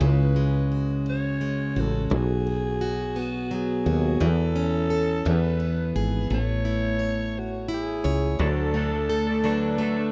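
A growling alto saxophone carries the melody in a raspy, jazz-style voice, mixing a breathy subtone with scooped notes that give this romantic, heartfelt six-eight pop ballad its ache. Beneath it, a picked, plugged-in steel-string acoustic guitar plays a full-bodied jumbo accompaniment with fresh strings and audible finger squeak, sitting close in the mix. A woody fretless electric bass adds a dark, round, hollow-body low end that sounds direct and forward. At 8.4 seconds a bright, twangy twelve-string electric guitar enters with clean, compressed arpeggios as the harmony moves from A toward D. Light reverb and a small room ambience give the piece the rough feel of a home demo, and the passage is cut from a longer performance.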